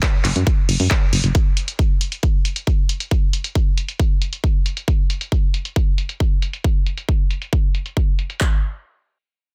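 A driving, straight 4/4 pulse at 136 BPM anchors this soaring uplifting trance excerpt, where an overdriven big-room dance drum kit pounds out handclaps and a punchy kick up front, a tape-warm analog drum machine adds handclaps and filtered hi-hats from 0.0 to 8.4 seconds, and a round, mellow FM bass with a fast attack and sidechain pumping sounds only from 0.2 to 1.3 seconds between F#1 and F#2, all in a dry, dense, heavily limited modern master.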